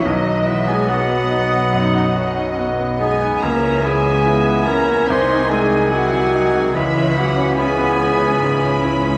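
Set in 4/4 at 72 BPM with a rubato feel, this brief cut from a longer romantic movement for piano and orchestra sounds lyrical and passionate. A brilliant grand piano with long sustain carries the melody alongside a rich, intimate violin section bowed sul tasto with light vibrato. Supporting lines come from a vintage-toned clarinet, an airy flute group in the background, a smooth oboe and a floating, pure second violin section. Beneath them, a woody viola section and a dark bassoon fill in the accompaniment while a mellow, distant French horn section holds sustained chords. The bass is shared by a very quiet tuba, a soft-attack cello section and a double bass section. The harmony moves from B to C#m7 at 3.4 seconds, G#7/B# at 5.1 seconds and back to C#m7 at 6.7 seconds, all set in the lush reverb of a scoring stage.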